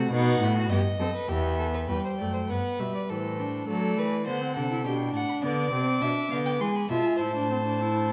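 A short cut from a baroque-style fugue for string quartet opens with all four bowed gut-string players sounding together, set in E minor at 102 BPM in a stately 3/4 with a straight feel and tuned to A4 = 435 Hz. The first violin carries the melody between C5 and D6 with light vibrato and a period-style, reedy tone, while the second violin, rich and nasal with its own light vibrato, shapes a second line between D#4 and G#5. Beneath them the viola supplies accompaniment from E3 to F4, and the cello anchors the bass from E2 to F#3 with a nasal, up-front presence even as it carries a distant quality. The harmony moves from B7 to Em, then after a shift into a new section at 1.9 s travels through Am, D7, G/B and Bm before landing on E and turning to Am at 7.2 s. A wet recital hall reverb with a 1.7-second tail and a dark, warm production give the elegant playing a sense of space.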